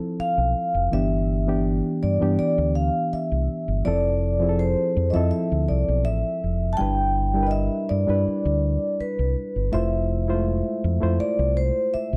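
Lush and romantic, this soul excerpt moves at 82 BPM in a straight 4/4, set in G mixolydian and cut from a longer piece, with chords alternating between Fmaj7 and G6. A barky, reedy electric piano with light overdrive and a bright edge through its built-in speakers opens the accompaniment at 0.0 seconds, joined at 0.2 seconds by a metallic, ringing vibraphone carrying the melody with medium mallets and slow motor vibrato, and a round, direct fingered electric bass sitting up front. Light reverb and a dark production give the whole a cosy glow.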